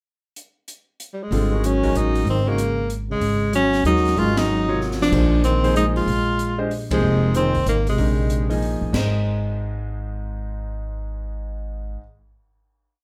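A warm, vibrato-laden tenor saxophone carries a searching, motif-based melody up front in this short modal jazz waltz with a swinging lilt, shadowed by a breathy, mellow trombone playing a harmony line mostly in sixths. Beneath them, a clear grand piano offers syncopated comping in quartal voicings, a woody gut-string upright bass plays thumpy pizzicato in a two-feel, and an acoustic drum kit with dark cymbals, a high-tuned snare and a boomy kick keeps time on the hi-hat, adding a fill at 4.8 seconds between two band accents. The sound is open and set back in a club-sized reverb, and the piece settles on a final chord at 8.9 seconds, held by piano and bass.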